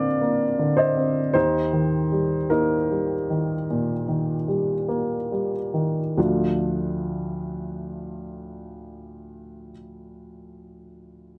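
Captured with close, detailed microphones and light reverb, this short excerpt from a longer piece is wistful, melancholic neoclassical minimalist piano in D phrygian, tuned to A4 = 445 Hz and played rubato in 4/4 at 46-55 BPM. A single dark upright piano plays solo, its woody, mellow, vintage tone sitting up front across a range from D2 to Eb5. The opening slows down as it moves from Bbadd9 to Eb, and a second section begins on Dm at 6.2 seconds.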